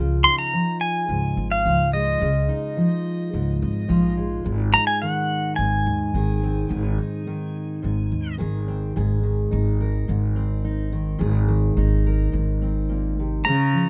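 Acoustic folk in a gentle, peaceful mood at 107 BPM in 4/4, this cut from a longer piece sets a full-bodied fingerpicked steel-string guitar with audible finger squeak over a woody, thumpy pizzicato upright bass on Dbadd9 moving to Ab. A clean, compressed pedal steel guitar carries the high slide melody with volume swells until 8.3 seconds and returns briefly at 13.4 seconds, and a bowed cello with expressive vibrato and portamento enters as a second line at 13.5 seconds, all in light reverb.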